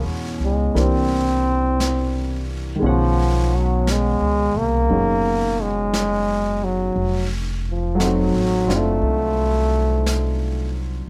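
Close, detailed microphones and very little reverb give this short cut from a longer jazz ballad an intimate, romantic feel, at a slow 58 BPM in swung 4/4 and tuned slightly low to A4 = 435 Hz. A clear, vintage-toned trombone carries the melody up front from the start, over a worn, slightly detuned upright piano and a woody pizzicato upright bass, while an airy, polished brush kit with snare and hi-hat sits low in the mix from 0.8 seconds. The harmony moves through Dbm7, C9, B69 and F7b9.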